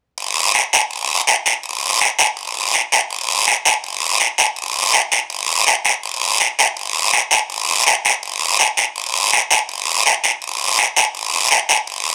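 Latin percussion at a brisk 164 BPM in straight 4/4, this joyful, danceable clip cut from a longer piece features a raspy acoustic guiro playing up front from 0.2 to 12.1 seconds, captured with close, detailed microphones in a small room with light reverb.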